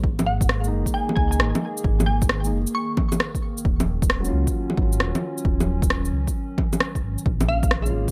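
A swung 133 BPM future garage groove in 4/4, built on a punchy layered electronic kick and up-front electronic bongos, shaker and rim click, carries this melancholic, nocturnal excerpt, where a dark, rumbling detuned saw bass and a warbling, nostalgic tape-like pad in the background both pump against the kick, a soft felt-muted upright piano with audible action noise and 12-bit sampler grit enters at 0.6 seconds, and a glassy, crystalline wavetable pluck with chorus and digital delay sings high melody from 0.3 to 3.2 seconds before returning briefly at 7.5 seconds, all over G#sus2, D#m7 and A#m7 chords in a bright 1980s-style digital production with light reverb.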